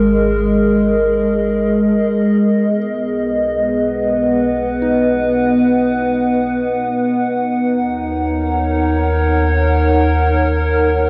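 Melancholic and reflective, this ambient passage drifts on a warbling, nostalgic tape-like pad of detuned, mellow sustained chords. The pad sits up front over a deep, ominous rumbling drone that fades in from 2.4 seconds. A very quiet, pure FM bell traces gentle arpeggios between 2.8 and 7.2 seconds, and the whole recording is steeped in a huge wet reverb and the worn pitch drift of old cassette tape.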